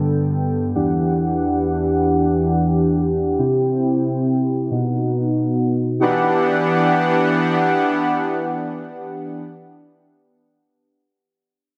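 Set in free time with an unmetered pulse, this short synthwave passage in E minor is cut from a longer piece and carries a nostalgic yet driving mood. A lone soft supersaw holds sustained chords from start to finish, its detuned unison sawtooth voices smooth and evolving, placed up front and shaped by a low-pass filter. Across the first 6.0 seconds a filter sweep moves through the synth as the harmony travels from Gadd9 to Em7, then C and B. At 6.0 seconds a new passage settles back onto Em7, with the chords spanning from E2 up to G5. A wet plate reverb gives the sound a long tail, and the dense, heavily limited modern master keeps it full and present.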